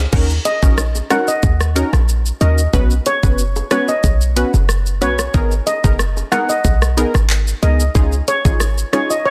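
A dense, heavily limited modern master with digital ambience frames this sultry, bouncy dancehall excerpt in Eb minor at 92 BPM, where a punchy, tight 808-style bass with a sine body and noise layer sits up front beside an electronic island pop kit of knocking kick, dark hats, handclaps, rim click, shaker and crash, while detuned sawtooth-and-square chord stabs with filter pluck, chorus and sidechain pumping move through Ebm7, Bsus2, Abmadd9 and Dbadd9, tight, high-tuned acoustic bongos in a small room sit in the background, and a close-miked, dry, metallic steel pan on medium rubber sticks carries the shimmering melody from 0.5 seconds.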